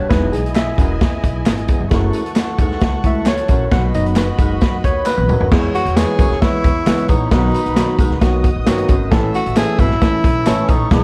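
Uptempo 1960s-style soul with a warm, uplifting mood, this is a short cut from a longer piece. A bright, barky tine electric piano, lightly overdriven through a combo amp, takes the spotlight for the first 5.5 seconds over a woody pizzicato upright bass, a mellow breathy baritone saxophone riff sitting in the background, and a soft, floating violin section bowed sul tasto as a second line. Beneath them a very quiet percussive tonewheel organ holds sustained chords with key click and a slow rotary speaker, while an up-front vintage drum kit with dark cymbals and a punchy kick drives things along, backed by a faint egg shaker and group handclaps. A drum fill at 5.1 seconds leads into the second half, where a clear, whispered tenor saxophone with light vibrato enters at 5.8 seconds to carry an intimate melody. The whole piece sits in a small room with light reverb and a layer of vinyl crackle that gives it a vintage record character.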